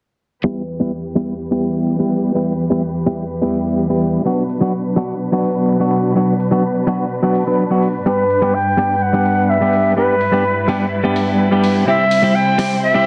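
A clean, compressed electric guitar with tremolo and tape echo and a dark, lush bowed string section under a low-pass filter sweep open this euphoric, anthemic festival progressive house excerpt in E minor at 126 BPM, joined at 0.7 s by metallic, overdriven electronic hi-hats, before a reedy, pure concert flute with vibrato and tape echo takes the melody at 8.1 s over an Em, Bm, G, C progression in a dense, heavily limited mix with moderate room reverb.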